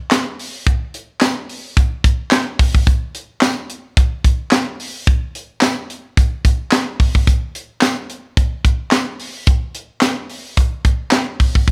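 A tight acoustic funk drum kit with a high-tuned snare, tight kick, hi-hat and handclaps sits up front in a small room from the first moment, with a very quiet, jingly, saturated tambourine beneath it, giving this brief cut from a longer piece a funky, late-night, lightly swung sixteenth-note feel under light reverb.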